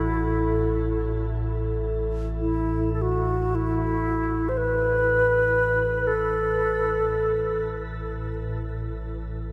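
World meditative music in free time, this brief excerpt from a longer piece feels spacious and contemplative, set in a vast, echoing space with a huge ambient reverb. A baroque flute carries the melody up front between E4 and C5, its woody, pure tone shaped by vibrato and a soft attack, and trailed by shimmer reverb and a diffuse ambient delay. Beneath it, a metallic, inharmonic drone sustains a low A1, eerie and chorused, with a slow attack and long release that let it outlast the other parts until 9.5 seconds. In the background, a quartz singing bowl rings on A4 with slow beating and a suede-struck softness, bathed in its own shimmer reverb before it stops at 6.3 seconds. The flute falls silent at 7.7 seconds, leaving the drone hanging alone in the reverberant air.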